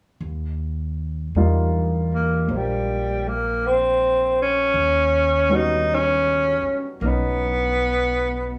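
Tender and romantic, this short fragment of a jazz ballad moves at a slow 53 BPM in 4/4 with a gentle swung eighth-note feel. The upright bass enters first at 0.2 seconds, its pizzicato steel strings sounding woody and placed up front in the mix. A baby grand piano joins at 1.4 seconds with warm, natural, short-sustained accompaniment. At 2.1 seconds the tenor saxophone takes the solo melody in a breathy, whispered subtone, with soft attacks, scooped notes and vibrato lending it an intimate jazz voice, bathed in plate reverb. The harmony rests on Ebadd9 before shifting to Eb7alt, all within a light studio ambience.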